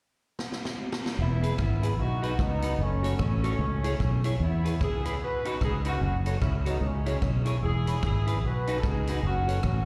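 A swung 4/4 groove at 149 BPM drives this joyful, cheerful ska cut in E major, with a big-band drum kit opening alone at 0.4 seconds on a fill of hi-hat, kick, rim click and a medium-tuned snare, its punchy kick sounding natural in the hall. At 1.2 seconds the fingered electric bass arrives, dark, round and foam-muted, sitting up front as the loudest part. The mellow horn section enters at the same moment to carry the melody, playing as a punchy but distant ensemble with light vibrato, treated with tape echo and slapback echo. A bright, twangy clean electric guitar joins at 1.4 seconds for picked accompaniment, colored by lush chorus along with its own tape and slapback echoes. The chords cycle through E, B, F#m and C#m, and the whole piece comes across as a live gig heard through the venue's PA in a recital hall, a short section taken from a longer piece.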